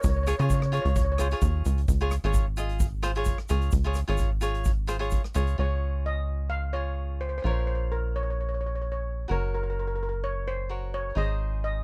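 Calypso in D-flat major at 129 BPM, this sunny, bouncy excerpt moves with a light sixteenth-note swing and a dry, close sound that recalls a 1970s studio. A tight sequencer bass runs throughout, punchy and up front, its sawtooth and square-wave tones shaped by a fast-attack filter pluck that decays into a mellow, driving pulse. The steel pan carries the melody with a metallic shimmer from hard rubber sticks, sounding briefly at the start and then returning at 5.6 seconds to lead over a progression of D-flat add9, B-flat minor, G-flat and A-flat. A crisp, picked cavaquinho enters at 0.3 seconds and keeps up an acoustic accompaniment to the end. For the opening stretch, an airy street-band drum kit with a boomy kick, hi-hat and rim click drives the groove alongside a grainy egg shaker sitting in the background, and both drop away near 5.6 seconds, leaving bass, pan and cavaquinho to carry the final section.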